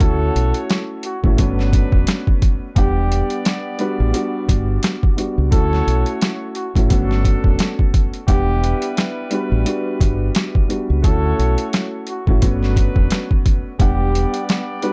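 A gritty, pitched-down boom-bap drum kit with a thumpy kick and overdriven crunch sits up front beside a round, punchy dub bass, while a woody, boxy upright piano moves between Dmaj9 and Gmaj9#11 under a veiled, breathy bucket-muted trumpet with scooped notes and tape echo, and a warm jazz horn section adds stabs to this dark, tough, swung hip hop excerpt cut from a longer piece.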